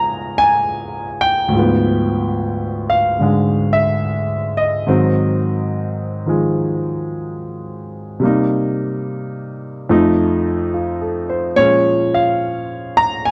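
Sophisticated and warm, this swung solo jazz excerpt in 4/4 features a smooth, vintage grand piano placed up front in a dry, close 1970s-style studio sound with light reverb, moving through Db7, Ddim7, Ab7, Cm7, F7 and Bbm7 across a range from Db2 to Bb5, tuned to A4 = 436 Hz, before it is cut off at 13.3 seconds.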